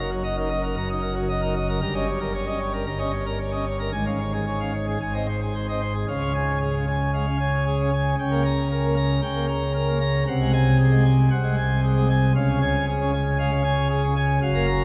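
In a straight 4/4 at 114 BPM, this majestic classical organ toccata in Db major features a solo pipe organ on full plenum with mixtures and baroque voicing, placed up front and spanning Gb1 to Bb5 with a brilliant sound, ringing through a wet church reverb with a 3.7-second decay as it moves through harmonies such as Ebm/Gb, Gdim/Db and Ab7/C before settling on Db in this 14.8-second cut from a longer piece.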